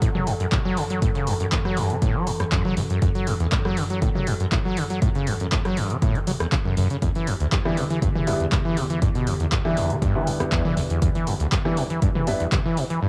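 A squelchy, saturated acid bass sits up front in this trippy, driving acid house excerpt at 120 BPM in F# phrygian, its gritty sawtooth riff coloured by lush chorus and analog delay over chords moving from F#m7 to Em7 at 7.0 seconds. A punchy electronic kick and an analog drum machine with handclaps, hi-hat, rim click and toms keep a straight 4/4 pulse, while a dark, warbling, nostalgic lo-fi pad holds sustained chords in the background with sidechain pumping. At 7.7 seconds a clear, worn concert grand piano adds delayed stabs, and the whole piece is a home cassette recording with light reverb.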